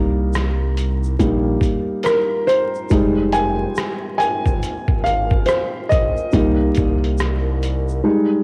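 A felt-muted upright piano leads this melancholic, nostalgic lo-fi hip hop excerpt, its boxy, intimate tone softened by a low-pass filter and cassette tape, with audible action noise, as it carries a solo over chords moving from Cm7 to Fm7 and back to Cm7. A smooth, detuned synth bass sits up front beneath it, while a muffled, pitched-down sampler-style drum kit of thumpy kick, hi-hat and rim click enters at 0.4 seconds with a swung sixteenth feel, and a grainy egg shaker rustles in the background. Light reverb and vinyl crackle frame the homespun cassette sound.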